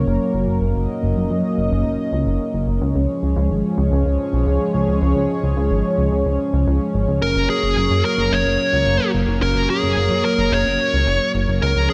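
This synthwave excerpt feels uplifting and dreamy, moving at a steady, straight pace over chords that shift from F# to C# and back again. A shimmering pulse-width pad holds sustained chords throughout, its chorused, detuned tone evolving with a slow attack and long release. Beneath it, a glossy chorused synth bass carries the low end with a plucky filter and fast attack, sitting up front in the mix. At 7.2 seconds a dark, smooth electric lead guitar enters with an overdriven, picked melody, trailed by delay. The bright, 1980s-style digital production bathes the whole in a lush hall reverb, giving the retro sound a spacious glow.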